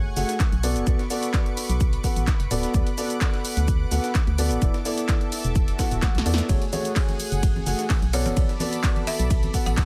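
A dark, woody upright piano carries the riff in this energetic, soulful piano house excerpt, its intimate, boxy tone marked by audible action noise, long sustain and a digital delay, all pumping against the kick. Beneath it, an organ-like FM bass sits hollow and percussive with a fast attack and tube saturation, while a silky, detuned sawtooth string pad holds sustained chords through an ensemble chorus. The beat starts at 0.2 seconds with a punchy analog drum machine of claps, snare, hats, ride and shaker, layered with a very quiet, gritty, pitched-up breakbeat kit, and an up-front electronic kick lands from 0.4 seconds. A background swell and a drum fill lead into 6.5 seconds, where ringing tambourine and congas join from a small room. A buzzing, dry marimba struck with hard mallets enters at 8.1 seconds with a vintage, band-limited melody echoed by digital delay, as the chords move from F#madd9 through Bm7, D6 and E7sus4 in a digital ambience.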